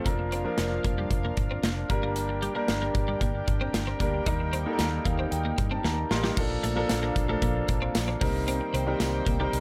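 A clear, intimate grand piano with audible action noise opens alongside a shimmering, retro pulse-width pad in the background, and within a moment a big rock drum kit with a punchy kick, a round, foam-muted fingered bass and a clean twelve-string electric guitar riff soaked in ensemble chorus and delay join in this moody, nostalgic 1980s-style pop excerpt at 114 BPM in 4/4. The harmony moves through Bb/F, Gm and Eb before the piano plays a fill from 4.8 seconds and the drums add their own fill at 5.8 seconds. At 6.4 seconds a new section begins on Bbmaj7 and Cm7, all under light reverb.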